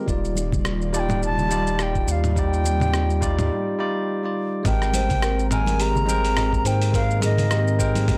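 Sunset chillout at 105 BPM with swung 16ths in Ab lydian, warm and sunny, where a barky, bell-like tine electric piano with analog delay and a filter sweep across the opening, a very quiet breathy pad, a round, deep analog bass with transformer saturation, a dusty, tape-warm sampler-style kit of hi-hat, rim click, shaker and toms, a thumpy electronic kick, and close, dry congas in the background carry an Ebmaj9 groove, joined at 1.0 s by a bright wooden flute melody in straight, expressive tone with its own delay, before a break at 3.5 s gives way at 4.7 s to an Abmaj9 passage where a hollow, ringing kalimba adds delayed thumbnail-plucked arpeggios, all captured in a dry, gritty hardware sound.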